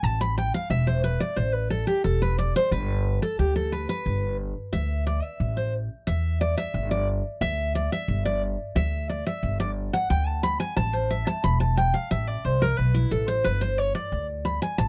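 A straight 4/4 bluegrass pulse at 179 BPM drives this lonesome, driving 14.9-second excerpt, where a bright, full-bodied picked steel-string acoustic guitar takes the solo over chords moving from A5 through G and Am, backed by a woody, thumpy pizzicato upright bass on gut strings, both up front in a dark, warm production with little reverb.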